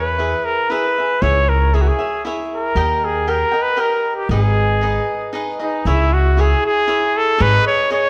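In a rubato three-beat lilt, this passionate, dramatic fragment of Mexican mariachi folk music sets a clear, classical-style solo trumpet up front, its soft attack, smooth top and light vibrato carrying the melody. A mellow, crisp picked cavaquinho fills in the accompaniment while a woody pizzicato upright bass sits forward with the trumpet before dropping out at 7.6 seconds. The moderate reverb of a recital hall surrounds the trio, and a new passage begins at 5.9 seconds, turning toward a suspended close.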